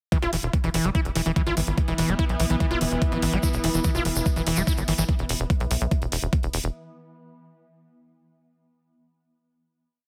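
A squelchy, screaming distorted acid line with chorus and delay drives this intense, hypnotic psychedelic trance piece at 145 BPM, its 12-step loop drifting against the bar over an overdriven four-on-the-floor kick, metallic hi-hats, a tight, rolling sixteenth-note sequencer bass, a swarming detuned drone and a blurred granular cloud pad that enter at 1.5 and 1.2 seconds, and a grainy egg shaker arriving at 3.4 seconds, all under a heavily compressed radio sound.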